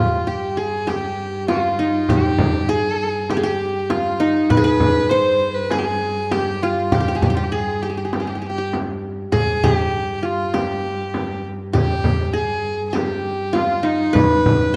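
A bright-edged qanun played with fingerpicks leads this melancholic, soulful Arabic maqam ensemble piece in G maqam hijaz at 99 BPM, with a clear violin carrying a nasal second line with light vibrato, a dark cello holding a smooth G2 drone, a crisp darbuka sitting in the background from 0.3 seconds, and a deep, distant frame drum joining at 0.9 seconds, all set in a moderate scoring-stage reverb.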